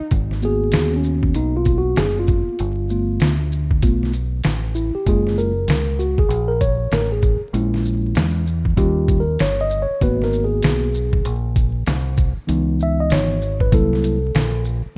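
A mellow tine electric piano leads this smoky, nocturnal jazz-hop cut from a longer piece, carrying a solo from 0.1 seconds through lush seventh and ninth chords that move from G#m7 through G9, F#maj7 and a brief A#m7b5 to D#7, then back to G#m7 and on to C#m7 before landing on a closing C7#11. Underneath, a deep dub fingered electric bass sits dark, round and punchy in the low register, amped yet direct and close in the mix. The trip hop sampler-style drum kit lays down a pitched-down, muffled groove of thumpy kick, medium-tuned snare, hi-hat and shaker, compressed and up front. The tempo is an unhurried 97 BPM in 4/4 with a loose swing on the sixteenths, giving the beat a lazy, late-night sway. Digital ambience, vinyl crackle and a rough home-demo mix wrap the piano's clean tone, heard through its built-in speakers, in a dusty, intimate haze.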